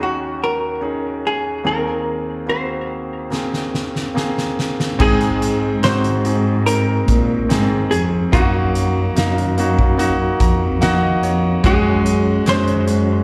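A dark, compressed hollow-body jazz guitar carries the melody with slapback echo over a clear, up-front concert grand piano with long sustain, joined by a loose indie drum kit with a fat snare and punchy kick that enters on a fill at 3.3 seconds and a bowed, vibrato-rich cello section holding the bass from 5.0 seconds, in a hopeful, heartfelt 72 BPM pop ballad heard as a live gig through the venue's PA with light recital-hall reverb.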